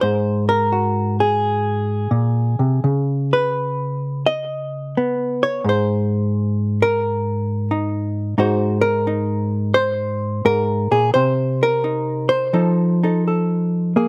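A dry, open-air recording with little reverb places a single hollow-body electric jazz guitar up front, its dark, clean, fingered tone compressed. This short excerpt from a longer solo jazz piece sits around 87 BPM in 4/4 with a swung, rubato feel in Ab mixolydian, and its mood is playful and warm. Ranging from Ab2 to Eb5, the guitar moves through Ab9, Dbsus2 and Abadd9 before turning to Cm7 at 11.1 seconds and F7 at 12.5 seconds.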